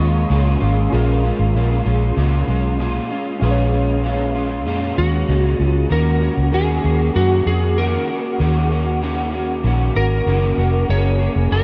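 A dreamy, reverb-soaked mix with a cassette-tape haze gives this brief excerpt of lonely, wistful indie pop in a straight 4/4 its faded, distant character. Up front, a dark, round, foam-muted vintage electric bass anchors the low end throughout, beside a slightly broken-up electric guitar through a small old amp, picked and treated with ensemble chorus and vibrato. In the background, warbling lo-fi synth keys with a nostalgic, mellow square and sawtooth tone and a filter sweep add chorused accompaniment until 5.9 s, while a very quiet, hollow, flute-like pad holds soft sustained chords only until 0.9 s. An electric slide guitar played with fingerpicks carries the melody, heard briefly at the start and then returning at 5.0 s, with a warm, slightly gritty tone dressed in analog chorus and diffuse ambient delay. The harmony moves from Bbm7 to Ebm7 and on to Gbadd9, all bathed in a huge ambient reverb.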